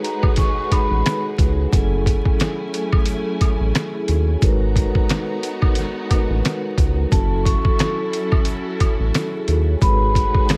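A compressed, pitched-down sampler drum kit with a thumpy kick and medium-tuned snare sits up front over vinyl crackle, while a soft-mallet vibraphone plays tape-coloured, boxy accompaniment and a distant, lush string section holds sustained chords in this reflective, gritty boom-bap hip-hop excerpt at 89 BPM with a swung 16th feel in F# dorian. A round, deep analog bass with an evolving, ring-modulated edge enters at 0.9 seconds, anchoring the drift between G#m7 and F#m9 voicings, as egg shaker and woodblock tick faintly in the background. A second vibraphone, mellow and metallic with slow motor vibrato and a digital delay, carries a brief high melody at the start and returns from 7.1 to 10.5 seconds, all bathed in light reverb.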